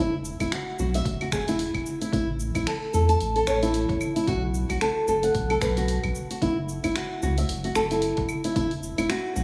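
Warm and earthy, this short excerpt of organic downtempo moves at 112 BPM in 4/4, with a gentle swing on the sixteenths. A fingerpicked flamenco guitar carries the arpeggios up front, its fresh strings and audible finger squeak caught in an acoustic tone, with a digital delay trailing the notes. Underneath, a round, sine-like sub bass holds sustained low notes with a fast attack and a sidechain pumping effect. A deep house kit of cabasa, claves, finger snaps and hi-hat enters at 0.2 seconds, joined at 0.4 seconds by a punchy, layered electronic kick that drops out at 8.7 seconds. The harmony moves from Esus2 through A5, B5 and F#7(no3) before returning to Esus2, all set in a light digital ambience.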